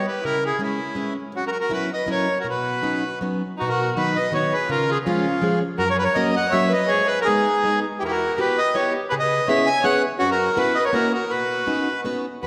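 Heard through a wet concert hall reverb, this short clip from a longer piece has the lingering resonance of a church or large hall. It is a charming, whirling musette waltz in three, with a gentle swing and a rubato give to the phrasing. The reedy, mid-forward accordion carries the melody up front throughout. Beneath it, a single bowed violin plays a smooth, even second line with vibrato and a nasal, somewhat boxy tone. A picked, plugged-in steel-string acoustic guitar supplies the warm accompaniment, also up front, with audible finger squeak on the strings. The harmony circles through chords such as C#m7, F#7sus4 and F#7 before resolving to Badd9, a turn that recurs near 11.3 seconds.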